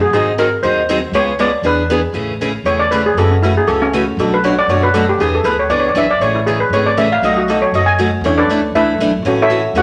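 Acoustic string swing in the jazz manouche style, swinging and charming, with a shimmering, metallic steel pan played with hard rubber sticks carrying the melody up front and taking a solo from 2.1 seconds, over a boxy, freshly strung parlour guitar picking the chords and a woody, thumpy pizzicato upright bass, all in a wet studio reverb in this short cut from a longer piece.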